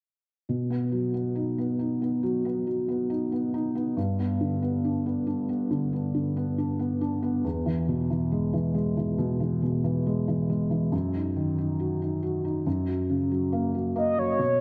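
A straight, unhurried 4/4 pulse carries this tender, heartfelt pop ballad, cut from a longer piece. A felt-muted upright piano plays the accompaniment from 0.5 seconds, its soft, intimate tone sitting up front in the low and middle register as the harmony moves from B through G and E to D#m/F# and F#. At 14.0 seconds a horn-like synth lead enters with the melody just as the passage closes, its round, vintage sawtooth voice shaped by a soft attack, sustained notes, vibrato, chorus and a filter sweep. The synth also has a gentle warble and sits up front beside the piano. The production is dark and warm, set in a moderate, lush hall reverb that lets the piano's natural timbre breathe.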